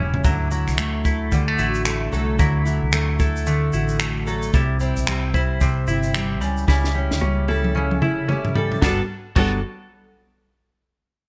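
A relaxed 4/4 groove at 112 BPM, with a 60% swing on the sixteenths, sets an easy-going, sunny acoustic pop mood in this short passage from a longer piece. A compact cocktail drum kit sits up front with a dark, smooth small-room sound, a high-tuned snare and a punchy kick, mixing shaker, finger snaps, toms and crash cymbal, and it plays a fill from 6.7 to 8.8 seconds. Carrying the accompaniment is a double-tracked, fingerpicked steel-string jumbo acoustic guitar, full-bodied and up front, its fresh strings giving off audible finger squeak. A clean electric guitar weaves twangy, compressed arpeggios through a subtle chorus, while a vintage fingered electric bass supplies a round, foam-muted, amped low end. The harmony moves from Dadd9 through C and A7/C# before arriving on Gmaj9 at 8.8 seconds as a new section begins, all set in a studio reverb.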